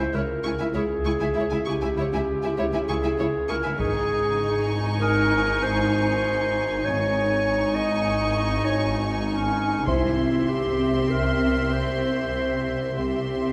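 Moving in a straight 5/4, this tense, eerie suspense cue sets a dark, sul tasto violin section on the melody above a floating second violin line and a soft-attack clarinet that sits up front yet sounds distant and roomy. Intimate violas, bowed cellos, a rich double bass section entering in the background at 0.7 seconds, a detuned, ring-modulated swarming drone and a very quiet felt-muted upright piano fill out the texture in a moderate scoring-stage reverb. Heavy-stick taiko hits come in twice, first at 3.8 seconds, and a huge but barely audible reverse cymbal appears at 13.0 seconds before the excerpt breaks off.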